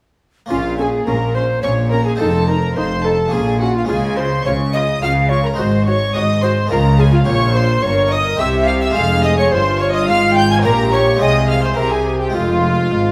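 Classical baroque-style concerto movement, stormy and dramatic at 106 BPM in 3/4, where an airy, chiffy alto recorder shares the melody with rich gut-string violins above a background second violin line, a dark, nasal viola section and a bright, plucked harpsichord, while close cellos and double basses carry the bass, all in a wet recital hall as Bb minor turns to F minor at 7.3 s in this portion of a longer piece.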